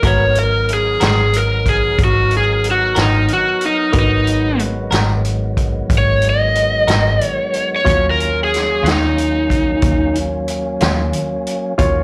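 This fragment of a longer live performance sounds mostly dry, as if heard through a club's PA with only a touch of room reverb. It is a mournful, smoky slow blues in 12/8 at 61 BPM, moving from Abm9 to Ebm9 at 7.9 seconds. Up front, an overdriven slide guitar played with fingerpicks takes the solo, its slapback echo trailing each phrase until it stops at 10.2 seconds. A fat, lightly overdriven tonewheel organ holds sustained chords through a fast rotary speaker. Behind them, a hollow-toned, scooped semi-hollow electric guitar adds clean picked accompaniment with tremolo and slapback echo, while a woody upright piano sits in the background with short sustain, audible action noise and its own slapback echo. A dark, round, foam-muted fingered bass and a vintage kit with a punchy kick, a medium-tuned snare, hi-hat and a rolled-off top anchor the groove.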